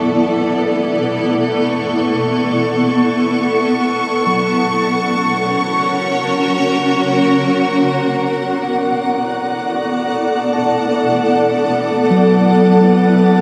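In a straight 4/4 at 77 BPM, this melancholic, spacious ambient excerpt in B minor sets a cloudy, detuned granular pad up front against bell-like, clean tine electric piano arpeggios in the background, colored by subtle chorus and tape echo, that fade out over the first 7.8 seconds; a lush, bowed violin section with vibrato enters at 1.6 seconds and later fades in, a barely audible, warbling analog drone arrives at 11.1 seconds, and a wet shimmer reverb hangs over it all as the chords move from Bm7 to F# to Bm11.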